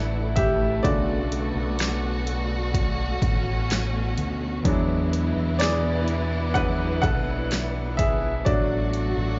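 Heard as a live gig through the venue's PA, with club reverb and nothing above 7.7 kHz, this short cut from a heartfelt, tender pop ballad moves at 63 BPM in a straight 4/4 over Dadd9, Bm7, E7 and D/A. A clear, woody upright piano sits up front and carries the solo throughout, while a distant, bowed studio string section holds sustained chords with vibrato, portamento and a soft attack. A round, dark fingered electric bass anchors the low end, and from 0.4 s a layered, electronic deep house drum kit adds a punchy kick, a fat snare and hi-hat.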